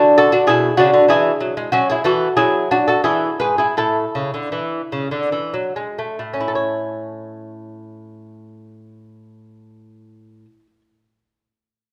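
A classical, baroque-style dance in triple time for solo lute, flowing and gently rubato in A major at 68-99 BPM, with the mellow, delicate fingerpicked double strings placed up front in a moderate recital-hall reverb, slowing from 0.8 to 6.2 seconds before a new section begins and the playing continues to 10.8 seconds in this passage cut from a longer piece.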